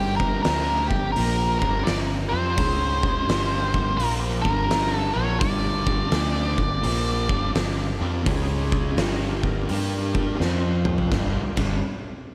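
A dark, up-front octave-fuzz lead guitar carries the melody through the first 7.5 seconds of this brooding, smoky blues rock and southern rock excerpt in G minor at 84 BPM with a swung feel, over a double-tracked fuzz guitar riff, a round, foam-muted vintage bass, a very quiet overdriven tonewheel organ holding thick chords through its slow rotary speaker, and an oversized, low-tuned drum kit with a fat snare and punchy kick that plays a fill from 10.4 to 11.1 seconds, all set in a lush hall reverb for a big arena sound.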